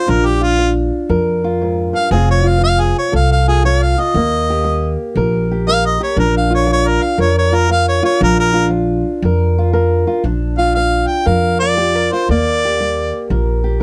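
Swung eighths in 4/4 drive this rollicking, gritty acoustic country blues, a short cut from a longer piece. A clear harmonica with light vibrato, a soft attack and scooped, jazz-styled notes takes the lead as a solo from 0.0 to 10.2 seconds. It is backed by a dark, boxy, woody old ladder-braced acoustic guitar, fingerpicked on old strings, and a warm pizzicato upright bass on steel strings. All three sit up front in a close, detailed, nearly dry sound, with the harmonica dropping out at 13.3 seconds.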